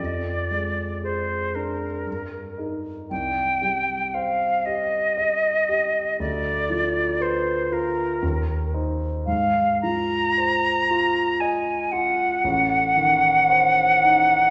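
Set in a slow 3/4 at 58 BPM, the rhythm breathes with a rubato feel, stretching and yielding through this tender romantic duo for flute and grand piano. The silver concert flute carries the melody between Bb4 and Bb5, its airy, metallic tone shaped by vibrato and a crisp attack. The concert grand piano supports it from A1 to Eb5 with a smooth, intimate, vintage sound, deep bass and audible action noise, sitting up front yet beneath the flute in level. The harmony leans into shadowed minor colours, moving from Ddim/F through Eb/G to Cm, touching Fm7/Ab at 9.3 seconds and arriving on Adim7 at 12.4 seconds. A wet recital hall reverb with a 1.7-second decay surrounds the pair in a warm church or concert-hall space whose top end is softly rolled off, and the passage, cut from a longer piece, runs 14.5 seconds.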